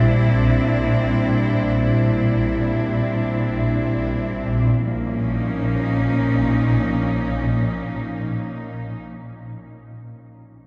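A swarming, detuned drone of granular sine tones, sitting low and up front with its own reverb, underpins a clear symphonic cello section bowing intense sustained chords with light vibrato, the two moving from C to B-flat minor at 4.7 seconds in this dark, cavernous ambient fragment in free time, steeped in a wet cathedral reverb.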